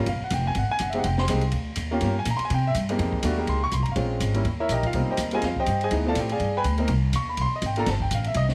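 Small-group swing and bop jazz in F minor, moody and late-night, moves at a brisk 246 BPM with a swung 4/4 feel as a clear, vintage upright piano and a woody, gut-strung pizzicato upright bass sit up front over an open acoustic drum kit with a high-tuned snare, boomy kick, hi-hat and ride, all in a studio room with light reverb, the harmony running through rich extended chords such as Fmadd9, Ebmaj9/D, Eb7b9 and G7b9 across 8.5 seconds cut from a longer piece.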